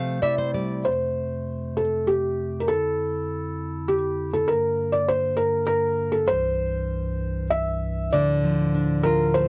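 Gentle and sleepy, this children's lullaby excerpt sways in 3/4 at 98 BPM with a loose, rubato feel in F major, tuned slightly below standard pitch. A felt-muted upright piano carries the melody up front with a dark, intimate tone, thick felt and audible action noise. A fingerpicked nylon-string guitar, full-bodied with fresh strings and finger squeak, opens with a short fill before dropping out at 0.8 seconds and returning at 8.1 seconds. Beneath them, a soft, hollow stopped-flute pipe organ holds mellow chords with chiff, moving from F through Gm and C to Dm in a dry, close 1970s-style studio sound.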